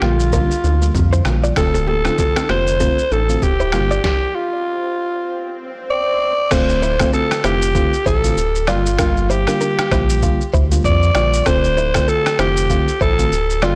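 Mellow and hypnotic, this afrobeats excerpt in D minor sways at 97 BPM with a swung sixteenth feel. A raspy, gritty alto saxophone leads up front with light vibrato and tape echo, over a warbling vintage FM electric piano with phaser, a bright, scooped clean guitar riff echoing in the background, a deep sine-like sub bass with octave, and a muffled, pitched-down sampler-style kit with thumpy kick, snare, rim clicks, snaps and shaker, while very quiet congas and bongos play from 0.3 to 3.9 seconds. The band stops at 4.0 seconds and an electronic swell enters at 4.8 seconds before the groove returns at 6.5 seconds, all through a blown-out, overdriven recording with light digital reverb.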